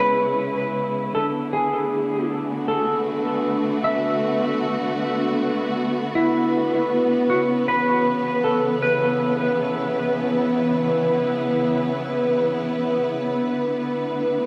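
Meditative and deep, this ambient excerpt drifts at 78 BPM in B dorian, moving between C#m7 and Bm7 chords. A dark, woody symphonic string section holds lush bowed chords with vibrato from the start to 14.5 seconds. Above it, a clean electric lap steel guitar plays a slide melody through dub echo until 12.6 seconds, all set in a dreamy mix soaked in plate reverb.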